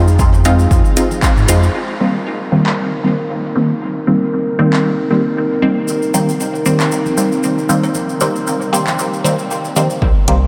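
A dreamy mix soaked in an enormous ambient reverb gives this hazy, cavernous dub techno excerpt its sense of depth, set in C minor at 116 BPM with a lightly swung 4/4 feel. A dark, detuned analog pad holds sustained chords with a slow attack and lush chorus, while a muted, up-front dub chord stab with filter pluck, phaser, cassette tape colour and dub echo carries the harmony from Fm7 to Cm7. Both of them pump against the sidechain, as does a round, sine-based sub bass that plays only at the opening and returns at 10.0 seconds. A punchy, overdriven electronic kick joins it in those same moments, with a band accent at 1.2 seconds, and drops out at 1.3 seconds, shortly before the bass leaves at 1.7 seconds. From 0.5 seconds onward, an overdriven deep house kit ticks along with handclaps and metallic hi-hats under low-pass filtering and dub echo. A grainy, bright tube shaker and very quiet, tape-tinged congas and cowbell appear at the start, then come back, the shaker from 5.9 seconds and the congas and cowbell from 6.1 seconds.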